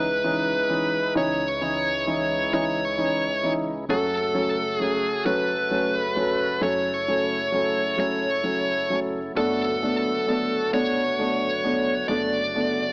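Heartfelt and swaying, this short pop excerpt moves at a slow 44 BPM in a lilting 6/8, cut from a longer piece. A dark, high-gain electric lead guitar sits up front with the distorted, picked melody, holding to a narrow range near the top. Beneath it, a felt-muted upright piano supplies soft, mellow, intimate accompaniment, while a percussive tonewheel organ sustains full, clean chords with key click and harmonic percussion, turning through a slow rotary speaker. In the background, a woody, thumpy pizzicato upright bass anchors the low end. The harmony settles from C#madd9 to F#m at 3.9 seconds and onto Bm7/F# at 9.4 seconds, all bathed in a moderate scoring-stage reverb and filtered through a narrow, boxy AM-radio tone.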